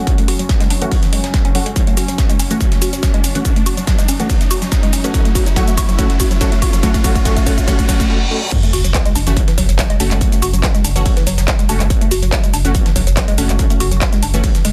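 Industrial and hypnotic, this driving peak-time techno excerpt builds for 8.5 seconds over a distorted, up-front kick, metallic hats, handclaps, shaker and crash, a very quiet gritty sampler-style kit, a woody wave-folded pluck riff with phaser and overdrive, aggressive detuned sawtooth rave stabs under a filter sweep, a deep moody pad, a drum fill, and a riser and reverse cymbal in the background, then drops at 8.5 seconds with an impact and a thick saturated sub bass entering at 8.7 seconds.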